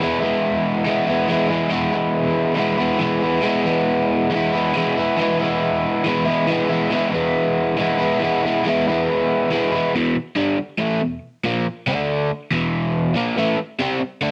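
Swaggering and rowdy, this short rock excerpt at 139 BPM in E major features a lone overdriven electric guitar, bright, picked and double-tracked, sitting up front with a compressed, cassette-tape grit and moderate reverb as it moves from an E chord into E5, D5 and A5 power chords from 9.9 seconds onward.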